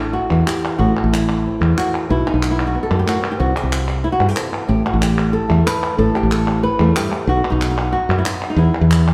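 Mournful and dramatic, this flamenco passage, cut from a longer piece, moves at a brisk 185 BPM in a straight 4/4. A fingerpicked acoustic flamenco guitar carries the melody up front, ranging from E2 to B4. Beneath it, a woody fretless electric bass with a dark, growly, round hollow-body tone sits direct and close, holding the low end between A1 and G2. Crisp palmas hand claps join at 0.3 seconds, sounding live in their room. The harmony cycles from Am through B and C back to Am, returns to B, then lands on an E5 at 8.6 seconds, all set in a wet stone room reverb heard from further back.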